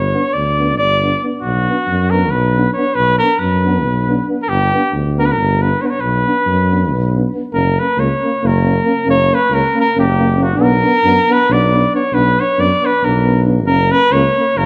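A clear flugelhorn with vibrato carries the melody up front in this bittersweet, virtuosic Balkan brass band piece, played in a straight 7/8 at 275 BPM in B harmonic minor and tuned slightly flat to A4 = 436 Hz. A mellow, soft-attacked tuba holds down the bass, while a dark French horn and a warm euphonium with light vibrato add classical-style accompaniment in the background. The harmony moves between G, B minor and F#, and a moderate recital hall reverb lends the cut its sense of space, with the second half beginning at 7.5 seconds.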